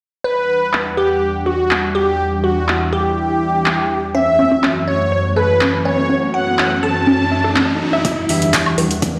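A straight 4/4 pulse at 123 BPM drives this expansive progressive house excerpt in E dorian, moving from Em7 to F#m7 and back, with a smooth, phased supersaw melody up front paired with a glassy, crystalline wavetable pluck in the background, both pumping against the sidechain above an airy, breathy pad under a filter sweep. The deep house kit brings metallic hats, handclaps and woodblock; a tight, detuned arpeggio with 12-bit grit enters at 4.1 s, and a riser starts at 5.2 s toward a build-up at 8.0 s, where a deep, tape-warm kick and retro, glossy polysynth stabs arrive. The mix sits in a stone room's wet reverb, as if played on a big sound system in a bare space.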